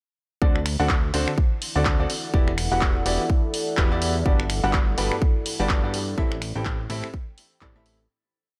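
Lightly reverberant, this short, bittersweet yet energetic piano house piece at 125 BPM with a swung feel sets an up-front, brilliant grand piano chord riff with tape echo and sidechain pumping over a fat, detuned sawtooth analog bass, a punchy four-on-the-floor electronic kick and dry drum-machine snaps, claps and open hats, while a deep, moody pad with chorus enters in the background at 1.7 s before the groove fades out from 5.5 s.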